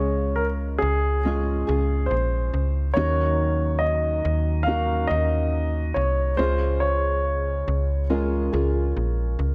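Pop in a hopeful, heartfelt mood, in which an up-front concert grand piano carries the melody with a polished, long-sustaining tone, audible action noise and a diffuse ambient delay, over a soft, mellow felt-muted upright piano accompaniment, small fingerpicked nylon-string guitar arpeggios tucked in the background with subtle chorus, and a snappy, metallic slap-like FM bass, set in a light reverb.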